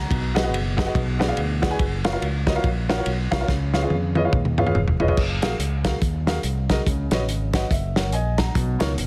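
Dense and heavily limited with light reverb, this short cut from a longer uptempo gospel piece feels soulful and hopeful in a swung 4/4, as a woody, mellow upright piano sits up front over warm fingered electric bass and a dry, muffled soul drum kit with dark cymbals and a tight kick, the drums taking a fill from 3.5 to 5.2 seconds before the piano adds its own fill at 7.3 seconds over rich seventh and ninth chords.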